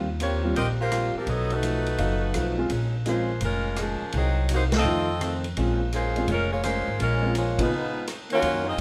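A moderate club reverb gives this short cut from a longer big band swing piece a close, lively room, with the bright saxophone section up front carrying the melody in Bb minor at a brisk 168 BPM with a swing feel. Brassy and dramatic in mood, it moves through chords from Eb69 and B7#11 to Bbm7, Cm7b5 and F7 before landing on Db13. Underneath, a woody, growly pizzicato upright bass sits forward in the mix, while a concert grand piano with audible action noise and deep bass plays until 7.7 seconds. A dark, picked steel-string acoustic guitar stays in the background, and a distant vintage drum kit with dark cymbals, a punchy kick and a rolled-off top keeps time on hi-hat, ride, snare and rim click. The band hits accents at 4.7 and 7.5 seconds and then stops from 7.7 to 8.4 seconds, as a tight, clear trombone section enters at 7.6 seconds with a second line.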